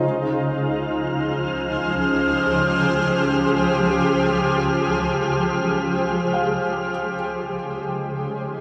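Set in a vast, echoing space, this serene, luminous ambient fragment in free time centres on an up-front, shimmering pad holding an Fm7/Db chord, while a very quiet felt-muted upright piano with audible action noise plays soft arpeggios, a nasal analog drone enters at 1.2 seconds in the background, and an airy, wind-like tuned noise texture breathes high above until 6.9 seconds; once the drone and piano fall away just after, the pad carries on alone.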